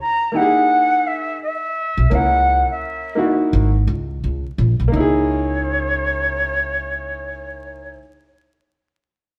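Cool, smoky jazz-hop with a swung groove, cut from a longer piece: an airy concert flute carries the expressive, tongued melody with vibrato from the opening, joined at 0.3 seconds by smooth, vintage upright piano chords. A thumpy pizzicato upright bass with woody steel strings enters at 2.0 seconds, sitting up front beneath the flute and piano. The band sounds as if playing live together in one stone room, its reverb wet, with vinyl crackle adding a dusty, late-night haze.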